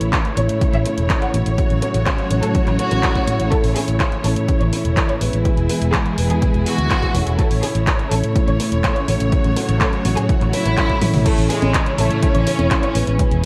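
A punchy, up-front analog kick drives this romantic, sunny italo disco excerpt alongside a layered house kit of congas, handclaps, toms, crash and bright hi-hats under gated reverb, with a fill at 10.9 s leading into a new section at 11.3 s. A fingered electric bass, amped and shaped by an envelope filter, carries the low end, while a mellow baby grand adds dark stabs with long sustain. A lush symphonic string section holds smooth, vibrato-rich chords beneath a distant violin section whose expressive melody trails tape echo, all set in light reverb over a layer of vinyl crackle.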